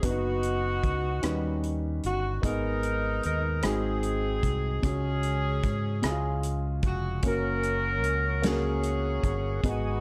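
A clear saxophone section with slapback echo carries the melody up front over a dark, woody upright piano, a round, punchy fingered electric bass and a natural country drum kit of hi-hat, kick, rim click and snare in this jubilant, soulful slow gospel excerpt in 6/8 at 50 BPM in F# major, moving from B/F# through D#7alt, G#m and C#sus4 to F#, where a soft, flute-like tonewheel organ with fast rotary speaker and chorus vibrato slips in behind at 7.2 seconds, all in a dark production with light reverb and small room ambience.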